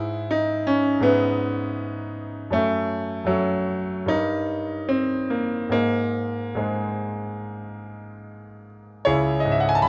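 A brilliant concert grand piano with deep bass and short sustain sits up front in this stormy, passionate romantic character piece for solo piano, moving with rubato at 70-82 BPM in 4/4 through a brief passage that travels from E/G# through F#m7, D#7/G and G# to settle on C#m at 9.1 seconds, captured by close, detailed microphones in light reverb, tuned to A4 = 444 Hz and cut from a longer work.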